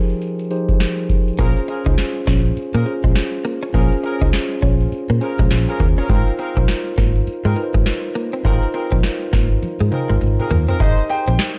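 A swung sixteenth-note groove from a booming analog drum machine, with deep kick, crisp snare and metallic hats, sets up this bouncy, slick new jack swing excerpt over a mellow tine electric piano. At 1.4 seconds a round, foam-muted fingered bass, a bright, chorused clean guitar riff and distant, roomy horn stabs join, and a drum fill arrives at 9.6 seconds. At 10.8 seconds a polished grand piano melody and a faint, grainy egg shaker enter as the harmony moves to Abmaj7, all within a dark, warm production bathed in digital ambience with the drums up front.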